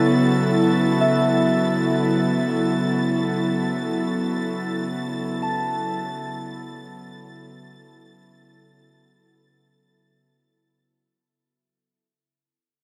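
An airy, breathy pad holds sustained B7sus4 chords up front with a detuned, chorused shimmer while a distant, bright violin section adds a high, vibrato-laden texture, and from 1.0 to 6.9 seconds a ringing, fingerpicked concert harp plays arpeggios in the background through a diffuse delay, all within a vast cathedral reverb as this weightless, warm ambient passage in free time fades out across its full length.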